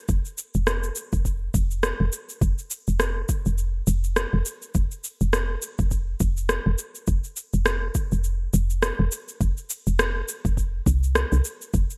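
Organic downtempo at 103 BPM with a swung 16th-note feel, this meditative, earthy excerpt from a longer piece pairs a woody FM bass, soft and round with a fast attack that decays into darkness, given tube saturation and sidechain pumping, with a deep, overdriven electronic kick drum up front. An overdriven electronic shaker and rim click with gated reverb run alongside them from 0.1 seconds to the end. The whole sits in light reverb with bright 1980s-style digital production.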